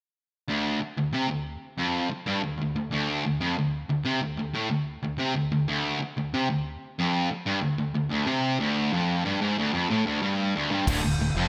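Two picked, up-front distorted electric guitars grind out a low riff in D minor from 0.5 s in this heavy, relentless metal excerpt at 92 BPM, with a growling, overdriven fingered bass and a punchy crash-and-kick hit from a studio drum kit arriving at 10.9 s, set in a moderate plate reverb with a bright 1980s-style digital sheen.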